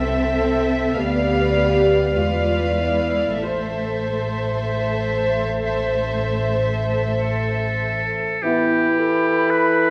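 Classical slow romantic movement for symphony orchestra in A minor, elegiac and yearning at a rubato 44-56 BPM, where intimate sul tasto strings (violins carrying the melody and a second line, dark violas, woody cellos and an up-front double bass section) are joined at 7.2 s by a clear solo oboe, then hand over at 8.4 s to an airy flute ensemble, a distant clarinet, an up-front bassoon and a brief mellow French horn chord over an Em harmony, all heard through a wet scoring-stage reverb and a worn, warbling old cassette tape tone.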